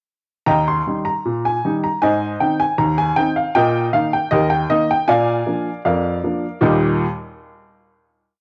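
Set in a straight 2/4 at 78 BPM, this short, complete ragtime piece in Eb major has a jaunty, lively mood. A solo upright piano plays alone from 0.5 to 7.1 seconds, with a clear, woody tone, short sustain and an up-front placement. It carries a tune over stride bass through Eb, Ab, Eb/Bb and Bb7 before landing on a final Eb chord at 6.6 seconds. Its sound rings in moderate spring reverb on a home cassette recording whose top end stops at 10.3 kHz.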